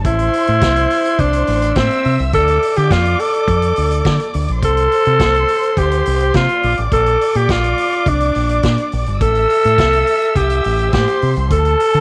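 Dark, bowed strings with a soft attack and tape echo open alongside a round, up-front fingered bass and a saturated, rolled-off vintage drum kit, before a raspy, growling alto saxophone takes the lead at 0.1 seconds in this glamorous, danceable disco excerpt moving from Am through Dm, C5 and Bb in a small, lightly reverberant room.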